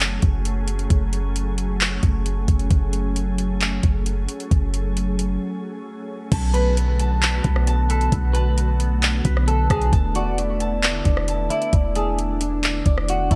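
A bright, 1980s-style digital sheen with light reverb frames this hazy, spacious cloud-rap excerpt in F# minor, moving at 133 BPM in a half-time 4/4 feel. A glassy, warbling FM pad with ensemble chorus and sidechain pumping holds sustained chords over a deep, boomy 808-style bass, while an up-front R&B drum kit with a knocking kick, metallic hats and gated reverb carries the groove, with a break arriving from 5.4 to 6.3 seconds. At 6.3 seconds a ringing, fingerpicked concert harp adds filtered, delayed arpeggios as the chords shift from F#madd9 to Bm7 and E7sus4, and a clean, picked electric guitar with analog chorus and delay takes the melody from 6.5 seconds.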